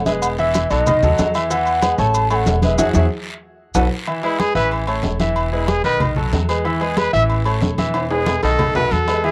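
Bright trumpet takes over at 4.2 seconds with a present, vibrato-laden pop-style solo, following an airy, bamboo-toned bass bansuri that carries the opening melody in a straight, tongued voice. This sunny, danceable salsa excerpt in E major moves at 186 BPM, with a brilliant grand piano, colored by cassette tape and plate reverb, accompanying up front with audible action noise over a woody, thumpy pizzicato upright bass. Soft-handed, thin-skinned congas, ringing saturated agogo bells and timbales, a raspy guiro and grainy maracas that drop out at 3.8 seconds fill out the percussion. The whole home cassette recording carries a light reverb, with a band accent and a drum fill marking the turn into the solo and another fill arriving near the end.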